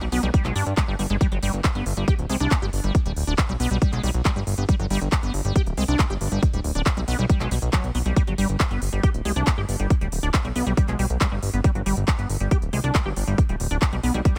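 A squelchy, resonant acid line on a square wave opens this psychedelic trance excerpt together with a fat, detuned sawtooth bass and a techno kit of handclaps and smooth hi-hats, and a heavy electronic kick joins at 0.3 seconds. The mood is alien and driving, moving at 138 BPM in a straight 4/4 and sitting in G major over a single G5 chord. The acid riff ranges from F#3 to G4, its fast-attack, decaying notes shaped by a filter sweep, chorus, digital delay and sidechain pumping. Beneath it, the analog bass holds the low end from D1 to G2 with a plucked filter, quick attack and sustained body, placed up front alongside the layered kick. The kit's hats and claps carry the character of a small room, while the overall mix stays dry with little reverb, running as one section until 14.4 seconds.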